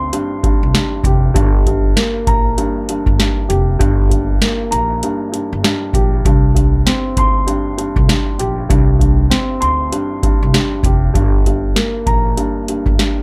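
Dark and reflective, this boom-bap hip-hop excerpt in G minor moves at 98 BPM with a 16th-note swing, as a booming analog drum machine with a deep kick, crisp snare and metallic hats sits up front beside a mellow, boxy upright piano filtered at both ends, while a growly, woody pizzicato upright bass anchors the low end through chords of C5 and Gm, the piano and drums carrying on alone from 13.0 seconds to the cut at 13.2 seconds in a dry mix.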